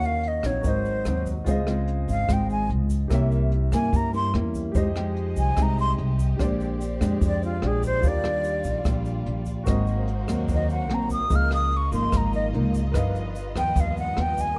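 A straight 4/4 bossa nova groove at 146 BPM rides on a brushed drum kit with a boomy kick and rim clicks, a grainy tube shaker in the background, and a woody, growly upright bass played pizzicato up front, setting a wistful, intimate mood in this piece cut from a longer work. A breathy metal flute carries the melody throughout, unsteady and up front, with a soft attack, lifted highs and vibrato, over a small fingerpicked nylon-string guitar and a concert grand piano with audible action noise, while a lush, distant bowed violin section adds sustained chords from 4.7 s. The dark, warm production keeps the room dry as the harmony moves from Ebm7 through jazz changes to a closing G7alt.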